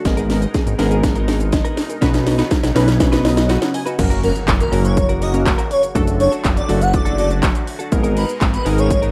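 A straight house pulse drives this upbeat, carefree dance-pop excerpt, with an overdriven, layered electronic kit that puts a punchy kick, cracking snare, handclaps, hi-hat, shaker and crash up front, and a fat, detuned sawtooth bass pumping beneath it. In the background, round, full-bodied analog keys with chorus and plate reverb carry the accompaniment, a filtered supersaw swell adds evolving sustained chords through a phaser, and a clean, compressed electric guitar picks a riff. The opening stretch is a build-up with a drum fill, where a glassy, crystalline wavetable pluck spins mellow arpeggios with delay until about 3.9 seconds, and the keys add a short fill just before the drop. At 4.0 seconds the drop lands with a very quiet electronic impact, and moments later an airy, dreamy lead enters, its soft unison sine tone gliding with vibrato and a sub octave over chords moving from F# to D/F# and back to G#madd9. 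The rough home demo mix keeps a light reverb around the room, with the drums and the thick low end pushing to the front.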